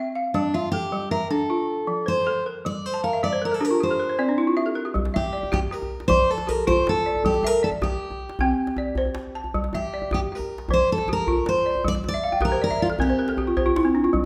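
Rolling in a flowing 12/8 metre, this reflective West African traditional excerpt sets a woody, round balafon playing arpeggios up front beside a full-bodied, picked steel-string acoustic guitar carrying the melody. A soft-handed, closely heard djembe joins at 5.0 seconds, and the balafon slips in fills just before that entry and again from 12.1 seconds. A moderate recital hall reverb surrounds the ensemble.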